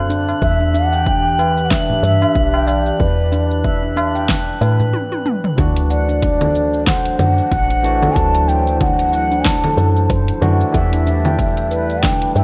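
Light, digital reverb frames this meditative, hypnotic organic downtempo piece at 93 BPM in swung 4/4, where a breathy, hollow bass bansuri carries the melody over ringing stainless-steel handpan arpeggios, a round, woody FM bass, a warbling lo-fi pad in the background, punchy overdriven electronic kick and a deep house kit with fat snare and metallic hats, while high-tuned tabla and a glassy, drifting texture drop out at 4.9 s as a drum fill leads into a passage on D7 where a bright, barky tine electric piano enters at 5.6 s.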